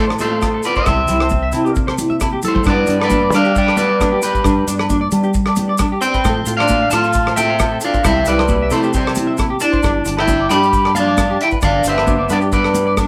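A lightly swung sixteenth-note pulse at 134 BPM in 4/4 drives this danceable highlife guitar band piece in G mixolydian, cut from a longer performance. Up front, a bright, twangy electric guitar at the edge of break-up carries the melody through spring reverb, while a breathy alto saxophone with vibrato and jazz-style subtone plays a second line beneath it. A second picked, slightly broken-up electric guitar plays arpeggios, and a fingerpicked nylon-string guitar, complete with finger squeak, adds classical-tinged accompaniment in the background. A round, dark fingered bass anchors the chords F/A, C and G. A soul drum kit with a tight kick, hi-hat and rim click sits in a small room with a rolled-off top and plays a fill from 2.1 to 2.7 seconds. Ringing agogo bells, high-tuned congas struck with hard hands and grainy maracas fill out the percussion, with the band playing live together in one room under moderate studio reverb, giving the whole a warm, danceable mood.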